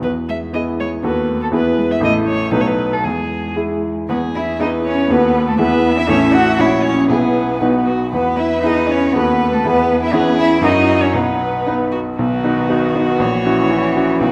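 A quick, spirited classical-period movement for piano quartet in 2/4, played with a lively rubato feel and cut from a longer piece. A warm, smooth violin carries the melody with vibrato over a bright, brilliant grand piano accompaniment that sits up front with long sustain and a vintage character. A focused, distant cello adds a second line from 0.3 s, a second violin joins with an even, bowed line at 4.1 s, and the harmony shifts to a new key centre around 10.1 s, all set in a wet recital hall reverb.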